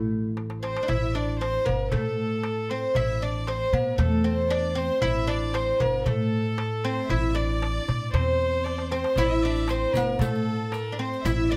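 A straight 4/4 pulse at 116 BPM drives this hypnotic, soulful excerpt of an Arabic maqam ensemble in A maqam bayati, grounded by a crisp, metal-shelled darbuka and a thumpy, gut-strung pizzicato upright bass. Up front, a woody, double-strung fretless oud carries the melody with plate reverb, while from 0.6 seconds a nasal, airy-bowed solo violin and a lush symphonic violin section in the background share a second line. After a drum fill at 8.7 seconds, a riq with bright jingles joins softly at 9.2 seconds, and the ensemble sits in a moderate studio room captured with close, detailed microphones.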